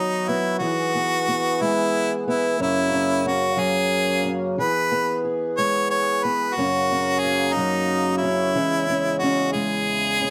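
A clear harmonica sits in the foreground from the first moment, carrying the melody with vibrato and a classical poise, its line trailed by a slapback echo. This short cut from a longer acoustic folk piece moves in a straight 6/8 at 60 BPM, counted in dotted quarters, and feels peaceful and nostalgic. Beneath it, a fingerpicked, ladder-braced acoustic guitar with old strings supplies a dark, woody accompaniment, while a hand-pumped harmonium sits in the background with reedy, breathing sustained chords that sound close-miked and dry. The harmony opens on B/D#, alternates between E and F#, and closes on C#m/E. All three parts play throughout the 10.3 seconds, framed by a light reverb.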